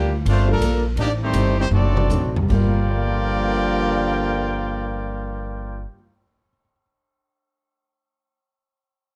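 Brassy and swinging, this short cut from a longer big band jazz piece sits in G minor at a tempo between 148 and 173 BPM, with a swung feel that slows down over its first 2.5 seconds. A brilliant trumpet section carries the melody up front with light vibrato, while a punchy, close-miked trombone section plays a second line beneath it. Pizzicato upright bass sounds woody and present at the front of the mix, and a smooth vintage upright piano with short sustain comps in the background from 0.5 seconds. A very quiet picked acoustic guitar with old strings adds a boxy texture, and the drum kit, airy with dark cymbals and a punchy kick, plays only from 0.3 to 2.6 seconds, closing with a fill from 1.7 to 2.5 seconds. The chords move from Gm9 through Am7b5 and D7b9 back to Gm9, all framed in a dark production with light reverb.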